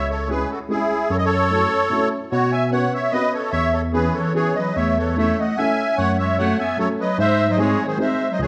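A reedy, shimmering musette accordion carries the melody up front in this nostalgic, bittersweet musette waltz at 148 BPM in 3/4, over a barky tine electric piano bass and a dark, woody upright piano accompaniment, with a smooth-topped classical clarinet adding a second line from 3.9 seconds as chords move from C#m through F#m7, Bsus2 and E6 toward G#, all set in the wet reverb of a recital hall in this short cut from a longer piece.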